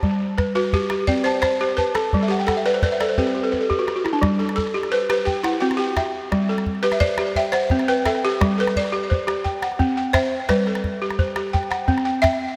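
Set in a lilting 12/8 at 115 beats per minute, this short cut from a longer West African traditional piece in G major feels hypnotic and joyful, with a small, close calabash playing percussion beneath two up-front balafons. One balafon, struck with soft rubber mallets, spins woody, buzzing arpeggios with a mid-forward tone, while the second balafon, also dry and woody, enters at 0.6 seconds with a delayed melody. After a balafon fill from 2.2 seconds and a drum fill from 3.5 seconds, a balafon solo begins at 4.2 seconds as the harmony rocks between G and C, everything bathed in a lush hall reverb that gives the mix a dreamy glow.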